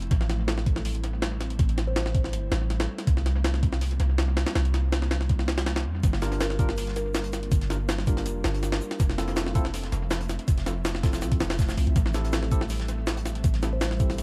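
Drum and bass with a jungle edge, this frenetic yet nostalgic passage is cut from a longer piece and bathed in an echo-heavy small-room sound flecked with vinyl crackle. Up front, a sampler-style jungle kit of hi-hat, kick and snare hits with compressed, pitched-up grit, a thumpy kick and a high-tuned snare, all run through analog delay, alongside a deep, boomy 808-style sine bass with fast-attack, decaying notes. Behind them, an ethereal pad holds sustained chords through ensemble chorus and reverb, moving from Am7 through C7sus4, Gm7 and Fmaj7 back to Am7. A soft, woody kalimba drifts in with brief dub-echoed phrases from 0.5 seconds, while from 6.0 seconds a dry acoustic soul kit of hi-hat, shaker and snare pumps quietly in the background with a rolled-off top and a fat snare. From 6.2 seconds, a clean tine electric piano adds stabs roughened by 12-bit sampler grit and analog delay.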